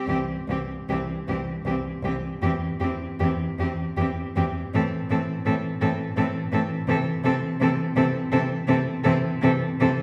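Yearning and solemn, this lyrical classical passage for cello ensemble moves in a rubato 3/4 at roughly 72-84 BPM in C major, cut from a longer piece. Four bowed cellos, each played by one player with vibrato, sound together from the start, the top voice carrying a clear, focused melody between G4 and A4 that sits close to the listener. Beneath it a second cello holds a line around C4, while a third gives smooth, even accompaniment on E3 from a distant spot in the background. Up front, a rich bass cello spans C2 to C3 with a softened top edge. The harmony moves from C to C/E, then to Am at 4.7 seconds and Am/C, all heard from further back in a reverberant recital hall with a 1.4-second decay.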